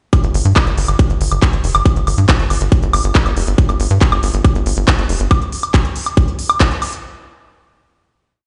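Psychedelic trance at 139 BPM in a straight 4/4, this short, complete piece feels intense and hypnotic from its first beat. A tight, layered electronic kick sits up front with a four-on-the-floor pulse, running from 0.1 to 6.7 seconds. Around it, a programmed techno kit adds smooth closed and open hi-hats, handclaps on the backbeat and a high woodblock, its tape-warm tone re-recorded in a small room. A punchy sequencer bass built from sawtooth and square waves rolls in sixteenth notes between F1 and G2, with a fast-attack filter pluck, decaying notes and a moving notch giving it a driving bite until it stops at 5.3 seconds. The whole groove plays as if through a big sound system in a bare stone room, with light reverb and a dulled top end.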